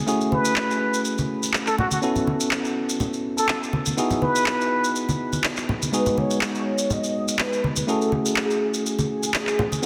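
A lightly swung 4/4 groove of damped, low-tuned congas, grainy maracas and up-front electronic handclaps, darkened by a low-pass filter and re-recorded in a large room, drives this moody deep house excerpt, while bell-like tine electric piano stabs ring through the chord changes with dub echo. A breathy, close-miked trumpet with a plunger mute plays a jazz-style solo line with a wah-wah bite until 4.9 seconds. From 5.9 seconds a round, sawtooth horn-like synth lead with vibrato, phaser, ensemble chorus and tape echo carries the melody, all set in an echo-chamber reverb with a dense, heavily limited modern master.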